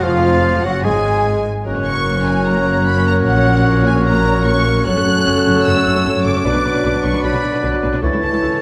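The violin section carries the melody with a lush, vibrato-rich sound and a soft, expressive attack, while a second violin line sits quietly in the background. This dramatic, fast romantic orchestral passage feels restless and urgent, its rubato pulse pushing forward through shifting minor and major harmonies in a brief 8.6-second span cut from a longer piece. Around the strings, an airy, distant flute, a clear close-miked oboe, a roomy clarinet and a mellow bassoon add woodwind lines, and a vintage-toned French horn section holds sustained chords. A very quiet viola section with portamento fills the middle, and cellos with a close, even studio sound join rich double basses on the bass line. Moderate concert hall reverb wraps the ensemble in a spacious, resonant room.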